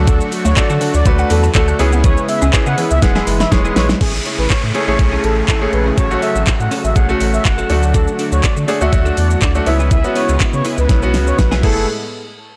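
Confident and bittersweet, this short dance-pop excerpt at 122 BPM opens on a drop where a woody mallet-like synth pluck runs arpeggios until 4.0 seconds over a bright grand piano, a soft supersaw, a deep sub bass with octave, a smooth expressive synth lead with vibrato, a clean twelve-string electric guitar riff and a knocking, up-front pop drum kit with handclaps and shaker, all pumping under sidechain except the guitar and drums, with a background downlifter from 4.0 to 7.9 seconds, drum fills and a blown-out, overdriven sound.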